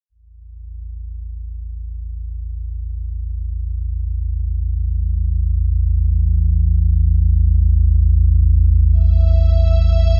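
A deep, ominous drone rumbles up front through this desolate, cavernous dark ambient excerpt in free time, its triangle and sawtooth tones rising slowly and sustaining low with a subtle chorus and a filter sweep running from 0.1 to 10.2 seconds. Late, at 9.1 seconds, an icy, crystalline glass pad enters high and quiet, its detuned sine voices carrying an airy noise layer and chorus. The production is dark and warm, with little room sound.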